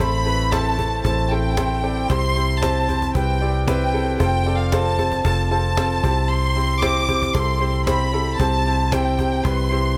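Hopeful and anthemic, this piano-driven pop excerpt moves at a straight 114 BPM in C major, passing through Am, C, F and C. A lush, bowed violin section carries the melody up front with smooth vibrato, while a clear upright piano supplies accompaniment and a dark, round, foam-muted electric bass sits close beneath. A woody cajon with faint snares stays in the background of a small room, and light reverb surrounds the parts.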